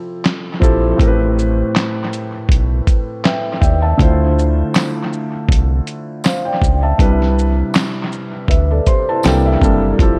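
A hazy, echo-heavy mix with light reverb and digital ambience frames this short, melancholic lo-fi hip hop cut, taken from a longer piece and moving at 80 BPM in 4/4 with a gentle 16th-note swing. A soft, felt-muted upright piano sits up front from the very start, its mellow, intimate tone softened by cassette tape saturation, a low-pass filter and analog delay, and it adds brief fills around 2.9 and 8.5 seconds. A compressed, muffled sampler-style drum kit enters at 0.3 seconds with a thumpy kick, medium-tuned snare, handclaps, hi-hat and shaker, also up front and touched with analog delay. A round, deep analog bass with a dark, sustained blend of sawtooth and sine joins shortly after, while a jingly acoustic tambourine sits in the background from 4.7 to 9.4 seconds. The harmony drifts through lush extended chords, from Fmaj9 and Am9 to Dm7 and Cmaj9, closing on C13.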